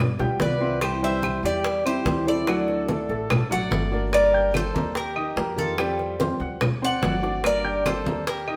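Warm and sultry at a brisk 145 BPM, this short excerpt of Cuban son and guajira sits in G minor and moves in a straight 4/4, shifting from its opening section into a second at 4.1 seconds. A dark, boxy old ladder-braced acoustic guitar is fingerpicked underneath, while a present baby grand piano spreads arpeggios across its range, and a thumpy pizzicato upright bass with gut strings grounds the low end. The congas ring low and saturated under soft hands, the high-tuned bongos sound tight and dry, and woody claves tick in the background from 0.8 seconds. Up front, the Cuban tres carries the melody with a metallic, double-strung bite and some octave-doubled strings. A close-miked, punchy trumpet with light vibrato adds a second line, and the whole band sounds as if playing live together in a reverberant stone room.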